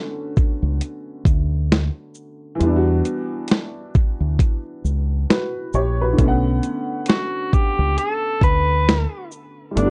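A melancholic, hazy lo-fi hip hop excerpt with a lazy swing, cut from a longer piece, opens on an upright piano playing accompaniment chords of Bm7 and Em7, its woody, intimate, slightly detuned tone carrying audible action noise and a short, boxy sustain softened by cassette tape and a low-pass filter. At 0.4 seconds a dusty, sampler-style soul drum kit comes in up front with hi-hat, shaker, a medium-tuned snare and a thumpy kick, sounding compressed and gritty. Just after, a deep dub fingered electric bass joins, dark, round and punchy, with a direct, amped character. At 7.1 seconds a vintage tenor saxophone takes the melody in a jazz style, its solo line carrying vibrato through a low-pass filter. The whole mix sits in light reverb on worn, warbling old tape with a drifting pitch and a dulled top end.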